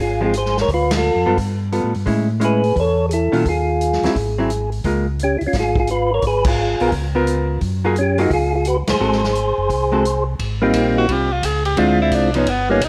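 A greasy, soulful soul jazz organ trio opens with a round, percussive tonewheel organ carrying the swung melody through a slow-turning rotary speaker, while a darker, mellow organ part with audible key click supplies the bass line. A clean, picked hollow-body archtop guitar adds up-front accompaniment, and a natural-sounding big-band drum kit with a punchy kick, snare, hi-hat, ride and crash swings underneath, punctuated by several band accents. At 11.0 seconds an edgy, forceful tenor saxophone bursts in with scooped notes for a brief solo, and the whole passage sits in a moderate studio reverb with the worn, warbling pitch drift of old cassette tape.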